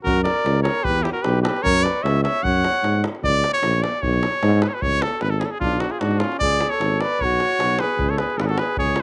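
A clear, up-front trumpet carries a virtuosic, restless melody in this Balkan folk brass band excerpt at 152 BPM in 2/4, shifting from F# phrygian dominant to C# phrygian dominant at 3.2 s, while a warm flugelhorn adds a classical-style second line with light vibrato and slapback echo that drops out between 3.0 and 5.6 s, a mellow, up-front tuba holds the bass with vibrato and a soft attack, and a tight davul plays the percussion, in a dry outdoor recording with a muted top end.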